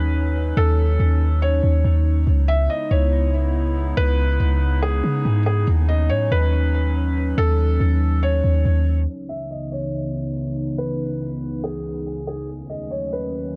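A deep, boomy 808-style bass sits up front in this hazy, ethereal atmospheric cloud-rap excerpt at 141 BPM in a half-time feel, its clean sine tone dropping out at 9.1 seconds as a filter sweep runs through the closing stretch. Above it, a felt-muted upright piano carries a soft, intimate melody through a low-pass filter and tape echo, while a warbling, nostalgic pad holds detuned, chorused chords with built-in reverb. The harmony in C# minor moves between D#m7b5 and C#m7, all set in a small, low-passed room ambience.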